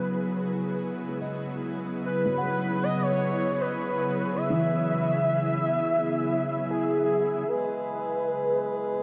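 A velvety synth lead carries a serene, luminous melody over an ethereal pad's sustained chords and a felt-muted upright piano's dark, boxy arpeggios fading in from the background in this slow 77 BPM ambient excerpt in E major, steeped in a huge reverb, until a reedy pedal harmonium drone joins at 7.5 seconds as the harmony settles from Emaj7 to E.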